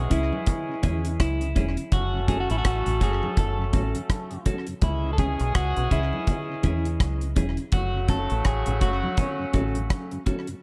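Hypnotic and serious, this roots reggae excerpt at 83 BPM swings its sixteenths over C#m and F#m chords, with a dry, up-front drum kit of tight kick, hi-hat and rim click and a round, punchy dub bass, a bright, twangy clean guitar carrying the melody through phaser and tape echo, a second picked guitar adding tube-saturated accompaniment, a vintage horn section with light vibrato and octave doubling on the second line, a mellow tonewheel organ with key click and slow rotary speaker in the background, and ringing, hard-hand congas set back in a small room.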